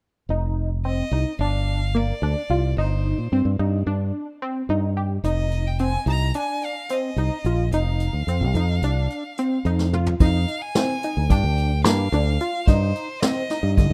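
A rough home-demo mix bathed in studio reverb carries this brooding, intricate progressive instrumental in 9/8, cut from a longer piece. A tight, detuned sawtooth synth spins driving arpeggios with a plucky filter, chorus and phaser beside a dark, round fingered electric bass placed up front, while a clear, smooth bowed violin with vibrato sings the melody through tape echo. A punchy, rolled-off brush kit joins at 5.2 seconds, and its fill at 9.8 seconds ushers in a new section at 10.2 seconds.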